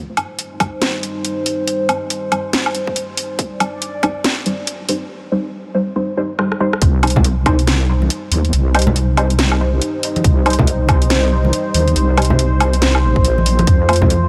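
The recording sits in light digital reverb, with a heavy, meditative deep dubstep groove at 140 BPM in C minor, swung on the sixteenths and felt in half-time. A dark, moody analog pad holds sustained detuned sawtooth chords with chorus and phaser throughout, while a muted, deep chord stab with a filter pluck and dub echo evolves under a filter sweep across the build-up. The garage kit, up front with a cracking snare, bright hats, rim click and woodblock, enters at 0.2 seconds in a small room, joined by a tight, layered electronic kick that drops out before a drum fill leads into the drop at 6.8 seconds. There, a heavy, saturated wobble bass mixing sawtooth and sine arrives up front with chorus, and soft-handed congas with dub echo sit in the background from 7.2 seconds. The harmony rests on C minor before moving to F near the end of this excerpt, which is cut from a longer piece.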